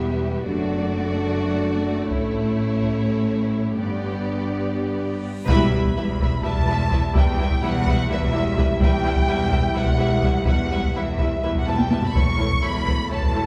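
Heavy-sticked taiko drums, recorded with a small-room sound, stand out in this epic orchestral film cue when they enter at 2.1 s, driving a straight 7/8 pulse at 252 eighth-note beats per minute. Above them, a dark violin section carries the expressive, vibrato-rich melody, shadowed by a second violin line with a soft attack, while background violas supply accompaniment and a French horn section, also dark in tone, holds sustained chords in the middle register. Rich, focused cellos and smooth, even double basses anchor the bass, giving the bowed strings a lush, full body. The opening build-up moves through D/F#, A and G before a huge, bright but very quiet reverse cymbal and sub drop at 5.2 s lead into an accented impact at 5.5 s, where the music settles into E minor. A short drum fill near the close pushes toward an A/E chord, and the recording sits in wet concert-hall reverb, cut from a longer piece.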